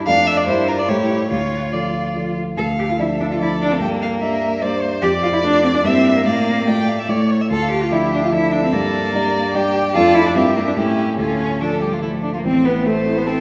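In a straight triple metre, this quick, urgent and stormy classical-period piano quartet excerpt sets a smooth, rich bowed violin melody with vibrato over a focused second violin line, a clear, distant cello line and a dark, mellow baby grand piano accompaniment with long sustain sitting up front, all in the reverb of a church or concert hall.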